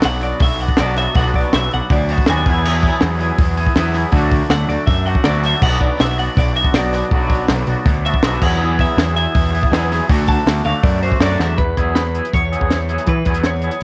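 A dry, lo-fi home cassette recording of an upbeat, jangly indie rock excerpt, where a punchy, overdriven fuzz bass and a compact cocktail drum kit with dark cymbals and a high-tuned snare sit up front beneath a twangy, double-tracked electric guitar riff and a bright, compressed twelve-string electric guitar melody, over chords cycling through Bm, Eadd9 and D, with a clean electric guitar solo running until 11.6 seconds and a drum fill at 11.4 seconds leading into a new section.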